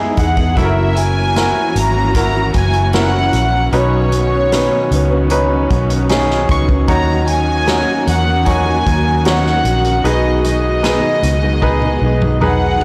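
A floating, pure violin section enters at 0.2 seconds to carry the melody up front over this heartfelt, hopeful pop ballad, arriving together with a distant, roomy acoustic drum kit played with bundle sticks that closes on a drum fill at 11.6 seconds. A polished, present baby grand piano and a round, foam-muted electric bass sitting up front hold the foundation beneath, while a woody fingerpicked steel-string guitar with tape echo and a lush string section with expressive vibrato and portamento fill the background. The overdriven, blown-out recording lends this brief cut from a longer piece a gritty edge, set in a small room with light reverb as the chords move from Emaj7 through D#m7 to B6.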